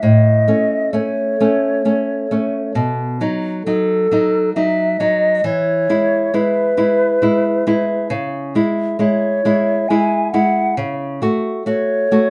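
Romantic chamber music for flute and classical guitar, this short passage moves in an unhurried triple metre with a flexible, rubato feel and a tender mood. The silver concert flute carries the melody throughout its 12.3 seconds, its tone mellow, pure and hollow, with gentle vibrato and clearly tongued notes. Beneath it, the nylon-string guitar is fingerpicked as accompaniment, sounding small, warm and placed up front, and the two parts sit at an even level. The harmony turns toward a darker, minor colour at 8.1 seconds, adding a wistful shade before the excerpt, taken from a longer piece, comes to an end. A moderate studio reverb lends a soft sense of room around the duo.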